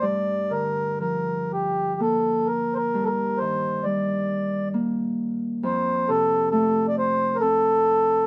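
A rubato 3/4 pulse drifting between 59 and 68 BPM gives this Celtic slow air in G minor, tuned to A4 = 442 Hz, a haunting, longing character. A mellow, reedy single-reed accordion with a round tone-chamber voice carries the melody up front, while a ringing, thumb-plucked acoustic Celtic harp sits slightly lower in the mix, supporting it through Gm7, Eb/G and F. Both parts play throughout this 8.3-second excerpt of a longer piece, captured live in one room with light reverb.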